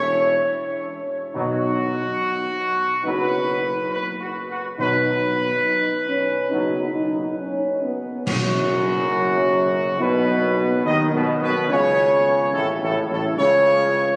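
A straight 4/4 pulse carries this majestic, triumphant classical fanfare, cut from a longer piece, as a warm, up-front trumpet section leads the melody over a mellow solo tuba bass. At 1.3 seconds a background French horn section and a tight, soft-attacked trombone section add sustained chords with light vibrato, round timpani on soft mallets join a moment later, and bright clash cymbals with concert bass drum mark a band accent at 8.3 seconds. Heavy cathedral reverb surrounds the ensemble, caught on a phone in the room, which leaves the trumpets, trombones and tuba sounding distant and roomy.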